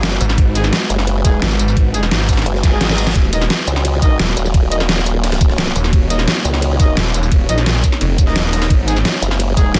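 Futuristic and tense, this dark technical drum and bass excerpt runs at 173 BPM in Eb minor, moving from Abm7 to Ebm7 and back. A knocking electronic kick, an up-front dubstep kit with deep snare and metallic hats, and a very quiet, gritty breakbeat layer drive it, while a snarling, saturated saw bass with overdrive and sidechain pumping growls alongside a formant-sweep wobble bass that drops out at 7.0 seconds and returns at 9.2. A deep, moody pad with chorus and reverb sits in the background under tight, mellow brass stabs with delay, and a reverse cymbal enters at 2.6 seconds and leads into a drum fill at 2.8 seconds, all in a dense, heavily limited modern master.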